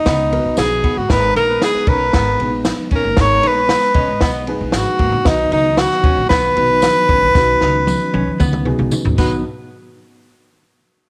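A straight 4/4 groove at 115 BPM drives this danceable, uplifting slice of 1960s-style soul in B major, with a breathy, close-miked tenor saxophone carrying the melody up front over woody pizzicato upright bass and a dry cocktail drum kit with a high-tuned snare and tight kick, while a clean hollow-body archtop guitar riff, a dark upright piano with audible action noise, very quiet damped congas and a jingly tambourine sit in the background, a flute-like tonewheel organ with chorus vibrato holds chords from 1.1 seconds, a mellow, distant horn section plays a second line from 1.1 to 4.4 seconds and returns briefly at 9.2 seconds, and a drum fill from 7.3 seconds rounds off the passage in a small, lightly reverberant room.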